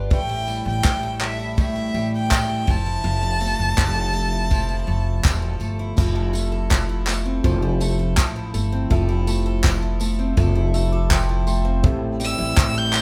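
A shimmering, octave-doubled twelve-string acoustic guitar and a woody, growly pizzicato upright bass open this tender, wistful acoustic pop fragment, joined at once by an intimate, softly bowed violin melody with light vibrato, a dry cocktail drum kit with a punchy kick, dark cymbals and handclaps, and a faint, jingly tambourine, before a reedy, bright electric piano slips in behind at 6.0 seconds, plays a fill at 10.4 seconds, and the violin returns at 12.2 seconds, all in the light reverb of a band playing live in one room.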